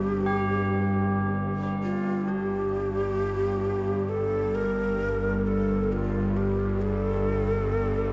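Drenched in a cavernous cathedral reverb, this ominous dark ambient drone fragment rests on an up-front, nasal, string-like drone low in the register, its tense sawtooth body trembling with vibrato. A breathy, hollow shakuhachi carries the melody through tape echo, while solemn tubular bells ring out arpeggios, also echoed on tape, alongside a deep, detuned analog pad that holds a Gsus2 chord until 2.3 seconds. A bronze singing bowl lingers at the edge of hearing, its faint metallic beating adding an unsettling, meditative haze.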